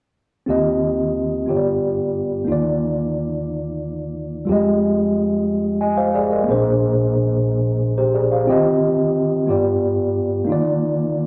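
Gospel in a slow, straight 6/8 at 60 BPM, this short cut from a longer piece feels jubilant and soulful, set in Eb major. A mellow tine electric piano carries the accompaniment up front, its clean, warm tone heard through built-in speakers and spanning from low in the keyboard to high chords. A fingered electric bass sits beneath it, dark, round and punchy with a direct, amped sound, and it drops out at 8.4 seconds, leaving the piano alone through the close at 11.3 seconds. The harmony moves through rich extended chords, Eb69, G7, Bbadd11/Eb, Fm9 and Bb9, before the opening progression returns at 8.5 seconds. A wet studio reverb gives the whole a soft sense of space.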